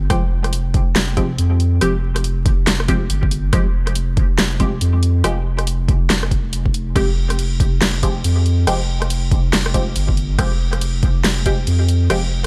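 A thick, saturated sub bass sits up front, holding deep sustained tones on an Fmadd9 chord in F minor beneath a heavy, meditative deep dubstep groove at 140 BPM, felt in half-time with a 16th-note swing. A punchy, layered electronic kick and a deep house kit with a fat snare, rim clicks, hi-hats and crash cymbal drive the beat, while muted, detuned chord stabs pluck in short bursts through a phaser, subtle chorus and dub echo. A bed of vinyl crackle hangs over this 12.5-second excerpt from a longer piece.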